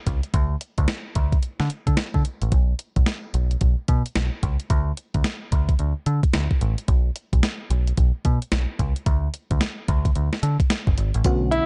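A crisp, sampler-style 8-bit drum machine and a deep, round picked electric bass open this new jack swing R&B excerpt together at 110 BPM, riding a 63% swing on the sixteenths in 4/4, with the tuning set to A4 = 435 Hz. The drum kit's thumpy kick, medium-tuned snare, hi-hat and tambourine sit up front with a tape-warm character, while the direct, amped bass ranges from F#1 to D3 as the harmony alternates between D5 and unharmonized passages. The mood is confident and slick, and the production is dark, framed by a digital ambience. At 11.2 seconds a mellow FM electric piano slips in, soft and warbling with a vintage noise layer and a chorus effect. At 11.5 seconds a clear, polished concert grand piano with long sustain sounds a single E4 just as the clip cuts off.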